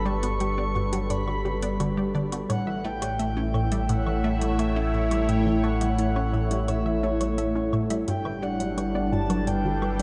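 Set to a steady, straight 4/4 pulse, this ambient stretch of sequencer-driven space music, cut from a longer piece, feels cosmic and luminous, with chords moving from Gmaj7 to A at 2.5 seconds and back to Gmaj7 at 8.1 seconds. A deep, round sine sub bass sits up front beneath a bright, detuned sawtooth pad that holds sustained chords with a slow filter swell and chorus. A juicy, squelchy blip pluck runs a low riff through phaser and delay, while a punchy unison pluck plays arpeggios in the background, its echoes trailing behind. Above them, a breathy, flute-like lead with a vintage, warbling tone carries the melody, coloured by lush chorus, cassette tape character, vibrato and delay. Electronic percussion of metallic hi-hats and woodblock enters at 0.2 seconds, its delay adding to the dreamy mix, which is soaked in a long cathedral reverb.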